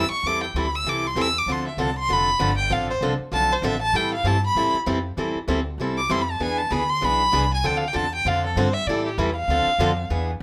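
Acoustic string swing in the jazz manouche style, this fiery, bittersweet passage in A minor moves at 195 BPM with swung eighths, its chords circling Am7, Dm7 and E7. A warm, bowed violin sits up front and carries the solo melody throughout, singing with vibrato, portamento and a soft attack, while a boxy parlour steel-string guitar, also up front, supplies picked accompaniment with fresh strings and audible finger squeak. Underneath, a woody, thumpy gut-string upright bass plays pizzicato, and the trio sits in light reverb.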